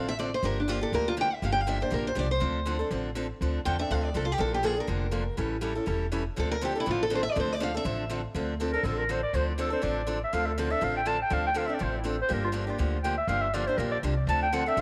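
Heard in a small room with light reverb, this bittersweet, swinging excerpt of acoustic string swing in the jazz manouche style sits close and up front, cut from a longer piece. It moves at a brisk 243 BPM in 4/4 with a swung eighth-note feel, in D minor, over changes that pass through Gm7, Dm7, Bbmaj7 and A7. Two picked steel-string acoustic guitars with fresh strings and a parlour character share the opening: one takes the melody as a solo until 8.1 seconds, and the other plays accompaniment throughout. Between them, one guitar sounds bright and boxy while the other is warmer. Beneath them, a pizzicato upright bass gives a woody, thumpy low end. At 8.7 seconds a clarinet takes over the solo line with a vintage tone: warm subtone, soft attack and vibrato, touched by tape echo.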